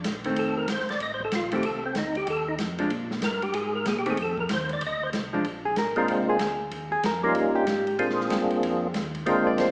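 Swinging and bluesy, this soul jazz organ trio excerpt moves at a brisk 189 BPM in Bb mixolydian, with a mellow, round tonewheel organ carrying the bass line through light overdrive, chorus vibrato and a slow rotary speaker beneath an acoustic drum kit with a boomy kick and dark cymbals. Up front, a fat, percussive tonewheel organ with key click and third-harmonic percussion takes the melody and solos through the first 5.4 seconds, before the clean, picked hollow-body electric guitar, which has been comping from 0.3 seconds, takes its own solo over a Bb7 to Eb7 blues turn. The whole trio sits in a wet, hall-like reverb, though the sound itself comes across as if played through a small speaker.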